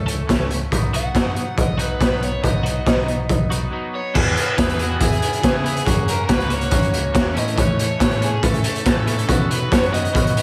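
A crunchy overdriven guitar carries the melody over a twangy, clean picked guitar riff and a bell-like tine electric piano holding the bass in the background, joined at 0.1 s by a compressed twelve-string guitar with analog chorus and a raw, gritty, up-front garage drum kit with a boomy kick, all in an upbeat, jangly indie rock excerpt where the guitars carry slapback echo, a short break lands at 3.7 s, and a new section opens at 4.1 s.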